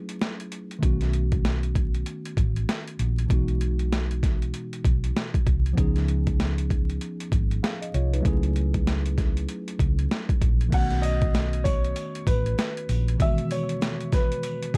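A swung 97 BPM boom-bap groove in 4/4 rides on a gritty, overdriven sampler-style drum kit with a thumpy kick, medium-tuned snare, hi-hat and crash sitting up front. A round, hollow-body electric bass enters at 0.8 seconds beneath a worn, slightly out-of-tune tine electric piano bathed in plate reverb, moving through F#m7, B7, Emaj7/B and C#7. At 10.7 seconds a clear, woody upright piano takes the melody with plate reverb and analog delay, joined by very quiet, jingly sleigh bells, all within a dark, dry mix dusted with vinyl crackle in this section of a longer piece.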